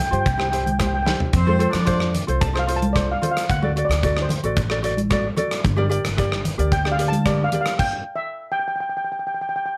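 Sunny and carefree, this calypso excerpt moves at 112 BPM in a straight 4/4, with a mellow, shimmering steel pan carrying the melody up front over fingerpicked ukulele, woody pizzicato upright bass and vintage, thick-skinned congas. A punchy gated 80s drum kit with a big-room sound plays a fill at 1.1 seconds, and a loose horn section with light vibrato and octave doubling adds a brief second line as the chords move from C to F6. At 7.8 seconds the band stops, leaving the pan on its own in a moderate studio reverb.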